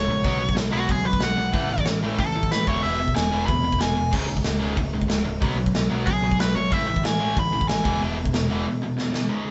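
A straight 4/4 pulse drives this raw, aggressive punk rock excerpt at 186 BPM, cut from a longer piece. Up front, a big acoustic rock drum kit sounds natural and roomy, with bright cymbals, a medium-tuned snare, a punchy kick and hi-hat, entering at 0.2 seconds and closing with a fill from 9.0 seconds. A biting, overdriven lead guitar carries a solo melody up front between F#4 and B5, ending at 8.0 seconds. Behind it, two picked rhythm guitars play riffs between C#2 and B3, one overdriven and the other tight and distorted, both bright and set in the background. A growling, overdriven picked bass, direct and amped with a warm tone, holds the low end from C#1 to E2. The band sounds as if playing live in one room with light reverb and a dark top end, while the harmony moves through B5, A5, E and C#5.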